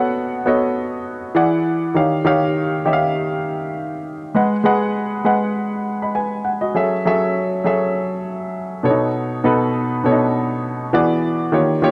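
Smooth and bittersweet, this soul excerpt at 100 BPM in 4/4 with a light sixteenth-note swing features a solo baby grand piano, worn and up front with short sustain, ranging from B2 to B5 through chords of B7, E9, D#7, G#m7 and F#m7 in a light reverb, running to 11.9 seconds.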